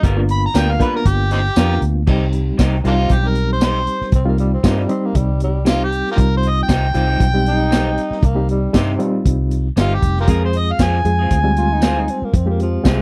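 An overdriven harmonica with tongue slaps and scooped notes leads this mournful, soulful soul-blues excerpt, backed by a reedy electric piano with fast tremolo, twangy guitar stabs through a small old amp, a round foam-muted bass and a gritty, saturated breakbeat kit with tambourine, while a breathy, growling tenor saxophone adds a second line from 4.2 seconds in a dry, close 1970s-style studio sound.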